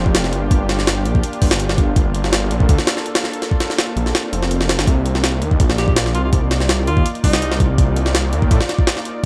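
A straight 4/4 jungle break drives this drum and bass excerpt at 165 BPM, its sampler-style kit sitting up front with a thumpy kick, a high-tuned snare and hi-hat that sound pitched up, compressed and gritty, as if re-recorded in a large room. Beneath it, a detuned sawtooth bass, thick, beating and menacing with a fast attack, holds sustained low notes between F1 and A2. A lush unison pad with chorus hangs mellow in the background, moving from Gm7 to Cm11 at 4.9 seconds in C dorian and giving the dark groove a nostalgic tint. A very quiet electronic swell sounds briefly just before that change, and at 5.8 seconds a bright alto saxophone enters for a short pop-style solo with vibrato, trailed by dub echo. The mix is dry, with little reverb overall, and the passage is cut from a longer piece.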